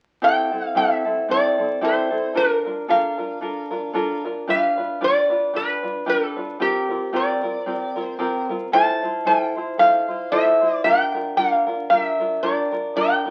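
Hawaiian music with a sunny, dreamy mood, this cut from a longer piece moves at 113 BPM in a lightly swung 4/4 and is tuned to A4 = 435 Hz. A metallic, nasal resonator slide guitar, played with fingerpicks, carries the melody up front from 0.2 to 13.3 seconds, while a mellow, fingerpicked tenor ukulele adds light accompaniment through chords such as Bbmaj7, G7 and Fmaj7. A club reverb surrounds the pair, and the sound carries the crackle of a very old 78 rpm record.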